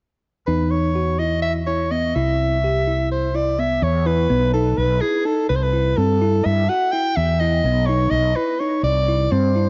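Bright and intricate, this progressive instrumental in 7/8 is cut from a longer piece, with a close-miked soprano saxophone carrying a jazz-style solo melody with light vibrato, up front and colored by cassette tape. Beneath it, a bell-like tine electric piano plays clean arpeggios, also with a cassette tape character. A dark, round fretless electric bass sits up front with analog chorus, and all three parts play from 0.5 to 9.7 seconds, shifting to a new section at 3.8 seconds inside a lush hall reverb on a lo-fi home cassette recording.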